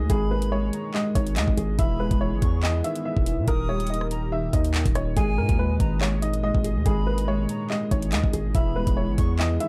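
Dark, warm production with a digital ambience frames this cold, tense half-time drill cut, where an up-front electronic kit with a knocking kick, metallic hi-hats, handclaps and rim clicks sits over a punchy, heavy 808-style bass with a fast attack and decaying tail. A worn, boxy baby grand carries the melody through a delay while a mellow grand piano, its action noise audible and its sustain short, plays the accompaniment. A smooth, detuned sawtooth pad with chorus holds sustained chords in the background, and an airy concert flute with expressive vibrato adds a delayed second line from 0.1 seconds.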